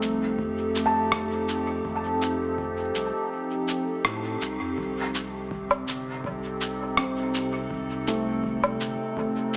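A warbling, detuned pad sits up front with chorus, phaser and its own reverb, holding sustained chords over a felt-muted upright piano whose soft, dark arpeggios carry tape echo and audible action noise in this spacious, deep ambient dub excerpt at 82 BPM in C dorian, moving from F7 to Cm6 at 4.8 seconds. Muffled, pitched-down electronic cabasa, rim click and woodblock sit close with dub echo, while a round sine sub bass holds the low end and a tape-warm electronic kick stays in the background, the kick dropping out from 3.3 to 4.8 seconds around a band accent at 4.0. A huge ambient reverb and small-speaker sound give the whole a lo-fi, nostalgic haze.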